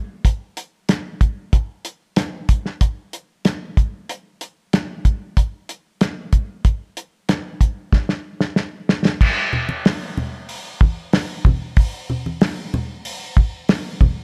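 A cloth-damped drum kit opens this rock excerpt at 0.2 seconds, thuddy and dry, sitting up front with a tight kick, a medium-tuned snare, and dark hi-hat and crash cymbals. Its rolled-off top gives the kit a smooth, muted character that suits the trippy, hypnotic mood of the straight 4/4 groove. A drum fill arrives at 7.9 seconds and carries the beat into a new section. Congas join at 9.5 seconds, low-tuned yet bright and thin-skinned, struck with hard hands and heard close and dry. They sit lower in the mix than the kit, and the whole recording has little reverb.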